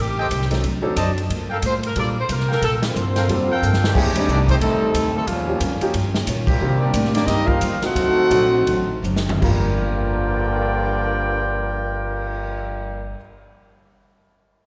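This dramatic, sultry big band swing excerpt in G minor opens with a clear saxophone section carrying the melody over woody, thumpy pizzicato upright bass and a very quiet picked steel-string acoustic guitar. A trumpet section with a soft attack adds stabs, and a warm concert grand piano with audible action noise sits in the background. The tempo moves between 154 and 181 BPM in a swung 4/4, and the polished drum kit, with its punchy kick and medium-tuned snare, brings ride, hi-hat, crash, toms and a cymbal swell, with drum fills marking the turns. A bright, close-miked trombone section enters at 2.8 seconds on a second line as the band hits an accent, and at 3.8 seconds the melody passes to a mellow trumpet section with light vibrato and a smooth top. The pace slows through the middle before the chords settle on G minor seventh, and a long, wet concert-hall reverb gives the drums an airy sense of space.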